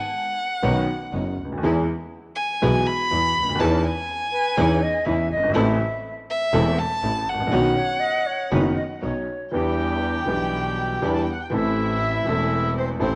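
A home cassette recording in lush hall reverb, this melancholic, passionate tango excerpt at 121 BPM moves with rubato as an expressive violin solo full of vibrato and portamento leads the first 9.5 seconds over a boxy, intimate grand piano with audible action noise, a focused bowed double bass and distant, earthy chamber string stabs, an airy silver flute with a crisp attack joins at 4.3 s, and at 9.5 s a dark, reedy bandoneon takes the melody as the music settles into E minor.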